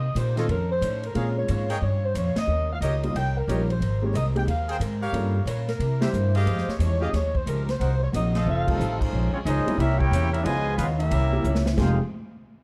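A dark, soft-edged saxophone section carries the melody through the opening nine seconds, its smooth top lifted by plate reverb, while a clear trumpet section adds stabs until about 8.8 seconds. This is sultry, brassy big band swing in a minor key, cut from a longer piece, with a growly, woody upright bass sitting up front and a polished drum kit with dark cymbals, a punchy kick and a medium-tuned snare driving the groove. An intimate concert grand piano, its action noise audible, and a boxy, ladder-braced acoustic guitar with old strings fill out the accompaniment, the guitar tucked into the background. Near 8.5 seconds a drum fill hands the melody to a warm trumpet section with light vibrato, while a distant, roomy trombone section enters underneath on a second line. The band hits accents through the first section, and the harmony moves through rich seventh and ninth chords before settling on Fm9 as a final drum fill closes out the moderate club ambience.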